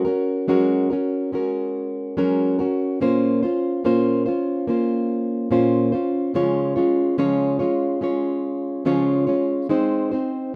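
Emotional and heartbroken, this short pop excerpt is cut from a longer piece and unfolds at a slow 72 BPM in 4/4 with a straight feel, in Bb minor. A fingerpicked, plugged-in steel-string acoustic guitar plays alone throughout, spanning Bb2 to Db5. Its jumbo body gives a full-bodied, up-front tone that sits close to the listener. The harmony moves from Gbadd9 to Bbmadd9 at 3.0 seconds, then to Db and finally Ab. Light reverb and studio ambience surround the guitar, and the mix has the rough character of a home demo.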